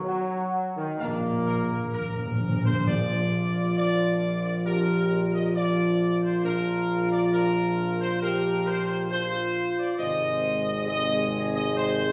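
In a straight, stately 4/4 at 67 BPM, this triumphant, majestic classical fanfare opens on sustained chords from a mellow French horn section and a trombone section set in the background. A clear trumpet section enters up front at 1.0 seconds with a lightly vibrato melody, joined by a warm, present tuba on the bass, as round, soft-mallet calf-head timpani play a fill and fall silent at 4.2 seconds while the harmony settles on Bb and later shifts to Ab. The brass sections sound distant and roomy in a reverberant recital hall with a dark, softened top, giving this fragment of a longer piece a ceremonial glow.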